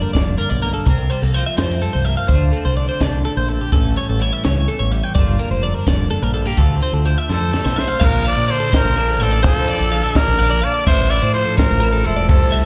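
Two clean, compressed twelve-string electric guitars open this wistful, intricate math rock and midwest emo piece in 6/8 at 84 BPM, one carrying lush chorused accompaniment and the other picking warm arpeggios through spring reverb and tape echo, joined almost at once by a growling, overdriven fingered bass up front and a dark, compact cocktail drum kit with a high-tuned snare and punchy kick, until a drum fill at 7.3 seconds ushers in a raspy, brilliant trumpet melody with vibrato and scooped notes, the performance heard live through a venue's PA with club reverb.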